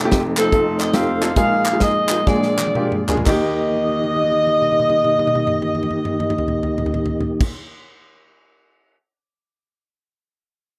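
Hopeful and jubilant, this short uptempo gospel excerpt in Eb major swings in 4/4 between 113 and 150 BPM, slowing over the first 3.3 seconds as the chords move from F7 through Bb7sus4 and Bb7 to land on Eb. An up-front saxophone section carries the melody with vibrato and a smooth top, over woody upright piano, a soft, flute-like tonewheel organ with slow rotary speaker and chorus vibrato, and hollow group handclaps. A natural country drum kit with a punchy kick plays fills from 2.3 seconds and again from 3.5 seconds, ringing on until 9.0 seconds in a small-room ambience with a rough home-demo feel.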